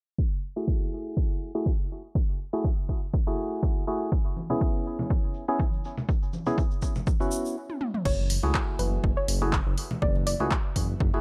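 Deep house at 122 BPM in F# minor with a smooth, light 16th-note swing, this excerpt opens on a punchy, overdriven electronic kick and a hollow, dark organ stab that pumps with chorus and tape echo under a filter sweep, moving from F#m9 to C#m7 as a grainy tube shaker and small-room congas join. After a brief stop and a drum fill at 7.7 seconds, an overdriven drum kit of crash, handclaps, hi-hat and toms arrives. At 8.1 seconds a nasal, detuned synth bass with vibrato and a soft, round pluck with echo come in, and at 9 seconds a breathy pad enters very quietly, all in a dry, low-passed mix.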